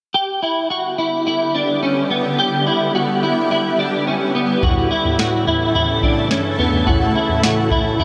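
A straight 4/4 pulse at 107 BPM underpins this haunting, melancholic dream pop fragment in E dorian, cut from a longer piece and tuned slightly low to A4 = 437 Hz. A clean electric guitar opens at 0.1 s with picked arpeggios, its compressed, up-front tone dressed in ensemble chorus and delay, before a shimmering ambient pad arrives at 0.9 s with sustained chords carrying an ethereal, detuned, granular sheen and an octave-up shimmer. At 4.6 s the harmony moves from Em7 to Em as a dark bass clarinet enters with a soft attack and smooth top, playing a low bass line in classical style. At the same moment a soft vintage rhythm box joins with a dry, analog, tape-warm character, offering a deep kick, crisp snare and toms. A huge ambient reverb with a long 6.6 s tail washes over the mix, deepening its haunting, melancholic atmosphere.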